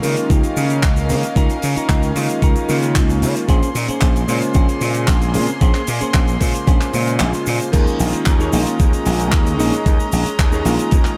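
Cosmic and groovy, this nu-disco excerpt moves at 113 BPM in a straight 4/4, drifting from Db69 to Bbm9 before settling on Eb7sus4 for a drop at 7.7 seconds, all steeped in a dreamy cathedral-sized reverb. An up-front, thumpy overdriven electronic kick and a gritty, punchy slap bass drive the groove alongside a damped 70s kit of hi-hat, shaker, handclaps and crash, while the kick drops out briefly at 7.2 seconds. A clangy electric grand piano with chorus, delay and sidechain pumping carries the accompaniment over distant, reedy chamber strings holding sustained chords, and a dark semi-hollow electric guitar riff with 12-bit sampler grit sits in the background.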